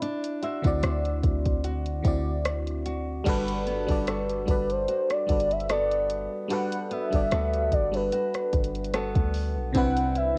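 A velvety, detuned synth lead with vibrato and portamento enters at 4.5 seconds over glassy, bell-like FM electric piano with chorus, fingerpicked flamenco guitar arpeggios with finger squeak, a boomy sine 808 bass arriving at 0.6 seconds, and an electronic drum kit with a soft kick, dark hats and rim clicks in this tender, dreamy contemporary R&B excerpt at 74 BPM in G major with lightly swung 16ths, where cassette-tape grain colors the keys, guitar, drums and lead and the dry home recording stays intimate as the harmony moves from D9 to Gmaj9 at 3.3 seconds and then to Cmaj9.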